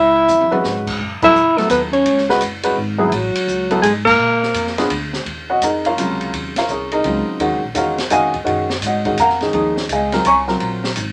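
Modal jazz in a brisk 3/4 at 168 BPM, swung on the eighths, this excerpt from a longer piece feels intense and cool, settling into Eb dorian at 5.3 s. A breathy, up-front alto saxophone carries the melody with subtone and scooped notes, joined by a bass clarinet with light vibrato on a second line, both playing only until 4.9 s. Underneath, a woody pizzicato upright bass on steel strings runs the full length, while an open acoustic drum kit with dark cymbals, a high-tuned snare and a boomy kick enters with a short fill at 0.3 s. An intimate baby grand piano, up front with audible action noise and short sustain, accompanies from 0.5 s and carries on after the horns drop out. The band hits accents at 1.2 and 4.0 s over harmony moving from F#m9 to A# before landing on Ebm11, all in a moderate studio ambience with a natural feel.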